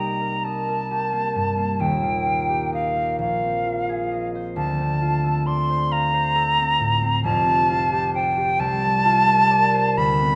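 A pure, tongued silver concert flute with vibrato carries a high melody over a ringing, fingerpicked concert harp in this mysterious, hazy impressionist classical duo, which moves in a rubato 6/8 at 44 BPM in C dorian through chords such as Cm7, Ebadd9 and Bb9sus4 before settling on C9sus4, all bathed in a moderate scoring-stage reverb in this fragment cut from a longer piece.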